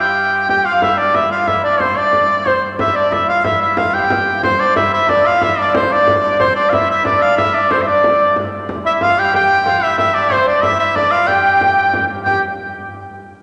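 A bright, up-front shawm carries a folk-style melody with vibrato over a chiffy chamber-organ drone on G2, joined from the start by a pure, mellow alto recorder and a softer, warm flugelhorn, each adding its own second line, while a close, dry frame drum enters at 0.5 seconds. This ancient, driving medieval dance moves in a straight 6/8 at 122 BPM (dotted quarters), shifting into a new section at 4.4 seconds. The ensemble sits in a reverberant church acoustic, and the recording is cut from a longer piece.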